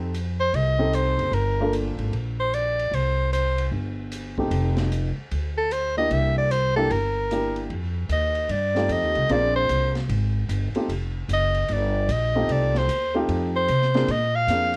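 Small-group swing and bop jazz at 151 BPM in F mixolydian, playful and warm, cut from a longer piece and heard through light reverb and worn, warbling old cassette tape with pitch drift. A bright, close-miked soprano saxophone with vibrato carries the melody up front, moving into a solo at 7.7 seconds over a woody pizzicato upright bass, an intimate baby grand piano with audible action noise and short sustain, and an open drum kit in a small room with dark cymbals and a boomy kick. The harmony leans on F9 and Bb9 chords with a swung eighth-note feel.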